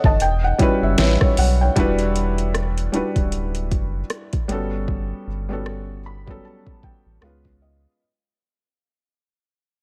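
Set in a digital ambience, this longing, moody contemporary R&B fragment at 77 BPM in E dorian, swung on the 16ths, places a mellow, intimate felt-muted upright piano up front, with audible action noise and short sustain, alongside a full, sustained sub bass with an octave in sine and triangle tones and a produced, tape-warm electronic drum kit of soft kick, deep snare, rim click and metallic hats. The piano plays fills from 0.0 s and again from 5.7 s over a progression of Em69, Em9, Gmaj9#11 and C#7, while the music fades out from 1.8 s.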